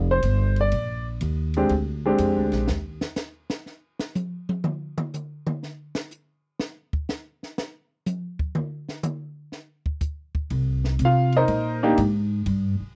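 The sound is dry and close, with the intimacy of a 1970s studio session and little room ambience, and every instrument sits up front. It is a short, swinging jazz piano trio passage cut from a longer piece, in a relaxed 4/4 with a lilting eighth-note swing. The woody pizzicato upright bass with steel strings opens over a rich Bb13 chord, and the clear concert grand piano joins a moment later, its clear upper register and deep low end ringing naturally, while the compact cocktail drum kit comes in just behind them. At 2.7 seconds the piano drops away, the bass follows shortly after, and the drum kit takes a solo, its dark cymbals, high-tuned snare, punchy kick and toms sounding acoustic and natural. At 10.5 seconds the bass returns on a Cm7, and the piano rejoins briefly before the passage ends, leaving a warm, swinging mood.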